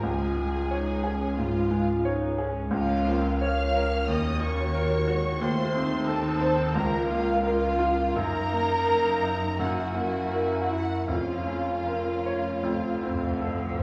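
A clear baby grand piano and a bed of muted, con sordino strings open together in this brooding, tragic classical passage, moving in a flexible, rubato four-beat pulse. The piano carries the melody up front with a natural tone and short sustain, while a lush violin section also plays the melody high above with vibrato and a soft attack. A second violin section adds a smooth-topped second line beneath, and a distant viola section fills in the accompaniment in the background. Cellos and double basses anchor the bass with a dark, veiled, bowed sound. The harmony moves from Db through Ebm7 and Gb7 toward Bbm/F and an F chord. Round, soft-mallet timpani enter quietly at 11.1 seconds and play a fill from 12.6 seconds to the cut-off of this excerpt, all set in the generous reverb of a recital hall.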